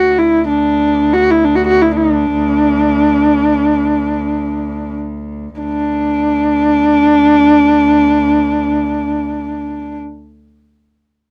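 A dry, close 1970s-style studio recording with a modest booth ambience captures a proud, vast Mongolian folk passage in free time and the D gong mode, cut from a longer piece, where a husky, focused horsehead fiddle sings the melody up front between D4 and F#4 with vibrato and portamento, slowing down over the first 5.6 seconds before a new section begins, while a distant, reedy cello with a nasal gut-string tone holds a bowed D2 drone beneath it.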